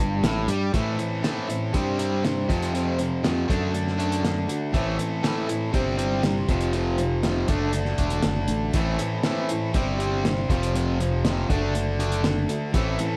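A straight, driving 4/4 at 120 BPM sets up this swaggering classic rock excerpt, where two overdriven electric guitars, one crunchy and bright, the other compressed, play an up-front riff over a growling, overdriven fingered bass and a muffled, cloth-damped drum kit with a fat snare and tight kick, while a picked plugged-in steel-string acoustic guitar with audible finger squeak enters at 0.7 seconds in the background, all in light reverb across a cycle of Am, C/G, F and D/F#.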